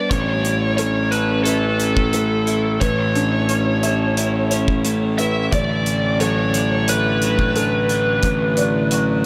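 Soaked in a huge ambient reverb, this dreamy post-rock fragment feels brooding yet cathartic, moving from Aadd9 to D6/A at 5.5 seconds. A biting, overdriven lead guitar carries the melody up front with delay, over a fuzz-laden picked electric bass, while a clean, compressed twelve-string electric guitar with phaser and delay and a soft, felt-muted upright piano with audible action noise play arpeggios in the background. A loose acoustic indie drum kit supplies hi-hat and a punchy kick in a pumping studio room.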